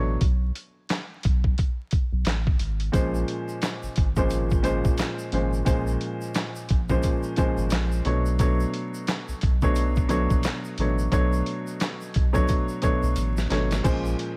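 A dusty, sampler-style drum kit sits up front in this dark, gritty boom-bap hip-hop excerpt, its compressed sound built on a thumpy kick, a medium-tuned snare, hi-hat, handclaps and crash cymbal, with a drum fill at 13.2 seconds. The groove moves at 88 BPM in 4/4 with a 60% swing on the sixteenths, giving it a loose, head-nodding lean. A warm, vintage grand piano also sits forward, its smooth, short-sustained chords filtered at both ends as they move from B7(no3) to Bbm9 and later Bm9. Underneath, a round analog bass holds deep, sustained, dark tones with a fast attack, staying low in the Ab1 to B1 range. A grainy, bright tube shaker enters at 2.9 seconds, compressed and saturated, tucked into the background. The mix is dry, with vinyl crackle laid over the whole recording.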